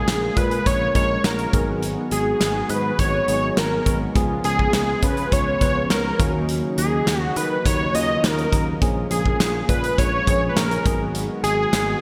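A thick, bright unison synth lead carries the melody of this short 1980s-style pop excerpt from 0.0 seconds, sitting up front with a detuned sawtooth edge, a ring-modulated bite, vibrato and a shimmer reverb with digital delay. Beneath it, also from the start, a worn, slightly out-of-tune tine electric piano plays lightly overdriven accompaniment in the background, while a brassy, bold analog pad holds sustained chords with a soft attack, a filter sweep, chorus and tremolo. At 0.1 seconds a growly fretless electric bass and a punchy modern studio drum kit join; the bass sounds direct and amped, and the up-front kit's medium-tuned snare, kick and hi-hat are wrapped in gated reverb and a pumping room sound. The straight 4/4 groove and minor-key chords moving through Bbm7, Abm7, Db7 and Ebm7 give the passage an urgent, dramatic mood. A lush hall ambience and bright digital-era production tie the parts together.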